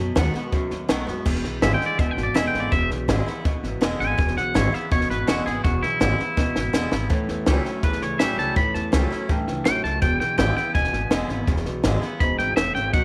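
A driving 164 BPM rockabilly groove in 4/4 with a straight feel opens this retro, upbeat excerpt in E mixolydian, cut from a longer piece, with a compact cocktail drum kit entering at 0.2 seconds to play dry, natural kick, snare, hi-hat and crash, its high-tuned snare and punchy kick sitting up front against dark cymbals. An upright bass plucks woody, thumpy gut-string lines underneath, while a boxy acoustic guitar plays picked swing-style accompaniment and an electric guitar through a small old amp adds a slightly broken-up, twangy riff from the background. At 1.6 seconds a bright, scooped, twangy electric guitar comes forward with a clean solo melody treated with tape echo, riding over changes that move from B7 to E7, then A7 at 7.1 seconds and back to E7. A short drum fill lifts the momentum just before that A7 arrives. Light small-room reverb keeps the whole band sounding close and lively.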